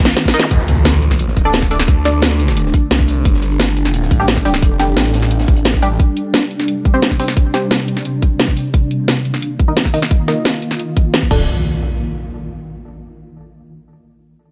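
Futuristic and aggressive, this dark technical drum and bass excerpt at 175 BPM in D phrygian opens with a drum fill before a zap and impact at 0.5 s and a thick, swirling phased detuned saw bass driven by overdrive, while an up-front tight electronic kick and a layered kit with a cracking snare, hi-hat, ride, crash and shaker drive the beat, a very quiet, gritty breakbeat kit with a high-tuned snare sits beneath until 5.9 s, muted, nasal dub chord stabs with analog chorus and tape echo move through a filter sweep, and a tense, granular swarming drone holds sustained chords under sidechain pumping.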